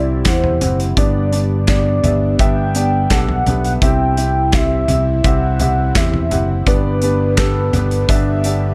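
Warm and uplifting, this piano-driven pop passage sets a velvety, chorused synth lead melody over a baby grand piano with long sustain, a very quiet breathy pad, a punchy fingered electric bass, and a loose, up-front indie drum kit of kick, snare, hi-hat, toms and handclaps that enters at 0.2 s, all in light studio reverb.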